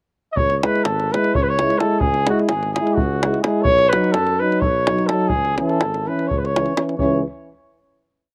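A mellow flugelhorn opens this fiery, restless Balkan brass band piece with a pickup at 0.3 s, its motif-based song phrases sitting up front with a distant, roomy tone and a slapback echo. In 7/8, the tuba plays root-and-fifth bass on the main beats with light vibrato, and a tight, dry davul beats out a two-stick pattern. A warm euphonium and a background trombone fill in offbeat chord lines before the band closes on a final chord at 7.0 s.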